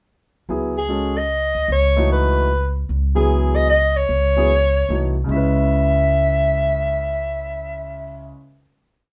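Cool and hypnotic, this short, complete modal jazz piece swings in 3/4 at 150 BPM in C# minor, with a warm concert grand piano laying down syncopated comping in open quartal voicings over a C#m9 chord, while an upright bass plays a woody, growly two-feel line. A breathy soprano saxophone enters at 0.8 seconds with a mellow, whispered solo built from motif-based call phrases, its vibrato and soft attack sounding distant and roomy. Light reverb surrounds the trio, and the piece settles onto a final C#m7 chord at 5.3 seconds.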